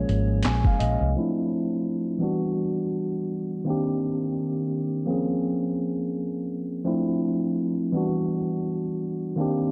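Lo-fi hip hop at 84 BPM with a swung 4/4 feel and a melancholic, hazy mood, this short cut from a longer piece opens with a gentle, quickly decaying FM synth lead in the background, a round, foam-muted electric bass and a gritty, thumpy boom bap sampler-style kit of kick, high-tuned snare, hi-hat and handclaps, all gone by about 1.1 seconds, leaving a clean tine electric piano to carry Bbm7, Dm7, Em7 and Cm7 chords under a filter sweep until 9.7 seconds, the whole dreamy mix soaked in lush hall reverb and cassette-tape haze.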